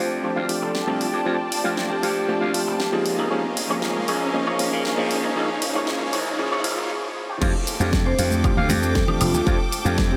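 A growly, punchy slap bass with tube saturation drives this sunny, feel-good nu-disco piece, cut from a longer track, at 117 BPM in a straight 4/4 feel in F major, moving between F6/9 and Db6/9 chords. Around it, a warm electric grand piano with a clangy, vintage low end plays accompaniment under a filter sweep, while a clear, lush studio string section holds bowed, vibrato-rich sustained chords, both breathing with sidechain pumping. A bright, twangy electric guitar through an envelope filter and lush chorus picks a riff in the background, and an airy, ringing vibraphone with medium hard mallets adds brief melodic phrases. A pop drum kit with a fat snare, hi-hat, shaker, woodblock and crash cymbal keeps time as a very quiet riser climbs through the build-up, which gives way to a short break at 6.9 seconds. The drop arrives at 7.4 seconds with a layered, up-front electronic kick, and hard-handed congas flicker in the background from 8.3 seconds. 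The whole mix is dreamy and soaked in a huge ambient reverb.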